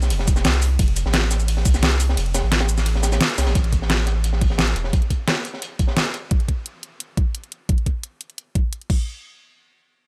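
Liquid drum and bass with a dreamy, uplifting mood, cut from a longer piece, opening on a drop where a deep, thick saturated sub bass with a triangle tone sits up front, joined at 0.3 seconds by an overdriven electronic kick drum with a knocking punch. A layered pop drum kit with a deep snare, crash, ride, hi-hat and shaker is also overdriven and up front, while a quieter crunchy breakbeat kit adds a gritty, high-tuned snare and hi-hats with a dark, rolled-off top. The kick drops out at 2.2 seconds before a band accent at 3.2 seconds, the sub bass stops at 4.9 seconds, and the dry mix carries little reverb.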